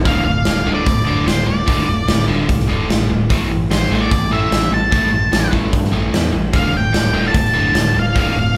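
Brooding and gritty, this short excerpt of classic rock drives along at 148 BPM in 4/4 with a straight feel in D minor, moving from Dm to Am at 3.3 seconds and back to Dm at 6.5 seconds. A dark, fuzzy octave-fuzz lead guitar carries the picked melody up front over a punchy, natural big rock kit of kick, medium-tuned snare and hi-hat. A biting overdriven guitar and a compressed overdriven electric guitar play the riff in the background, and a direct, bright fingered bass holds the low end. A very quiet, reedy tonewheel organ sustains chords with key click and rotary speaker, and the whole band sounds like it is playing live in one large studio room with moderate reverb.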